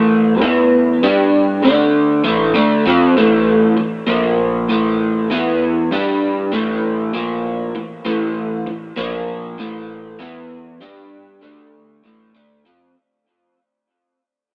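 A straight 4/4 pulse at 98 BPM underpins this short rock fragment, cut from a longer piece, with a hypnotic, mysterious mood. A single electric guitar plays alone throughout, running through a small old amp that gives it a slightly broken-up, lo-fi, picked tone, sitting up front in the mix. Flanger and tape echo color the guitar, and the whole is set in light reverb with a digital ambience. It cycles through power-chord shapes on E5, G5, D5 and A5 in the opening section, then the second section from 3.2 seconds brings in Bb5 alongside A5, E5, G5 and D5, circling back through the same moves. From 3.2 seconds to 12.9 seconds the recording fades out, letting the repeating figure drift away.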